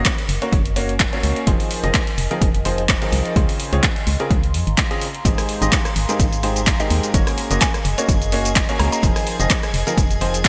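A clear, woody upright piano riff with delay and sidechain pumping drives this joyful, euphoric piano house excerpt at 127 BPM with a light 16th-note swing, set over a hollow, organ-like FM bass, a punchy electronic kick, up-front drum-machine claps, hi-hat, rim click and shaker in gated reverb, and a warbly, nostalgic tape-like pad, while a bowed chamber violin section with 12-bit grit joins at 5.3 s and a bouncy square pluck adds a brief melody from 6.8 s, all moving through Gb, Fm7, Dbmaj7 and Abmaj7 in a bright 1980s-style digital sound.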